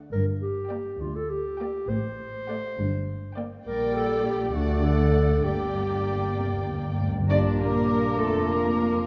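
This is a quick classical-period movement for symphony orchestra in G minor, urgent and stormy, moving in 6/8 at 67 dotted-quarter beats per minute and cut from a longer piece. Muted violin sections carry the melody and a second line over violas, with cellos and double basses holding the bass, all playing con sordino with a dark, veiled tone and vibrato. A mellow clarinet sits up front with its own second line, its present classical tone standing out against the shaded strings. Round, soft-mallet timpani add a fill from 5.4 to 7.3 seconds. At 7.3 seconds the harmony turns to Bb for a new section. A pure, hollow, distant small flute group joins there, along with an oboe, a bassoon and a dark French horn section holding sustained chords, all three in the background. A wet concert hall reverb gives the whole passage a spacious, blurred halo.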